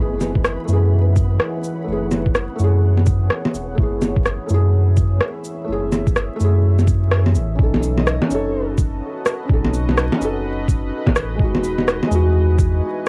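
Melancholic and rainy, this future garage excerpt sets a felt-muted upright piano, boxy with audible action noise, over a deep, moody pad, a round sine sub bass and a muffled, thumpy kick with tape-warm bongos, shaker, rim click and cabasa. The piano, pad and bass pump under sidechain, and a very quiet flickering granular texture ends at 7.6 seconds. The kick drops out at 7.1 seconds, coinciding with a band accent, before the chords shift, and a breathy flute-like synth lead drifts briefly in the background at 8.0 seconds amid vinyl crackle.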